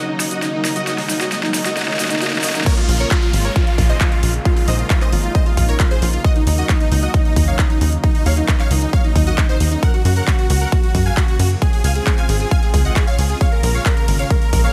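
Uplifting trance at 134 BPM in Bb minor, bittersweet and soaring, this cut from a longer piece opens with a short build-up where a huge, detuned supersaw melody, a very quiet bright pluck playing a second line, a lush warbling pad with chorus, background risers and a grainy cabasa gather over a drum fill. At 2.7 seconds the drop lands with an overdriven, punchy kick up front and a tight, driving sequencer bass, while the big-room kit's huge snare and claps hit and its hats and cymbals pump against the sidechain. The chords move from Ebm7 to Bbm7, then through Ebm7, Gb and Dbmaj7 back to Bbm7, and the dry, dense mix keeps the compressed lead thick and the low end punchy.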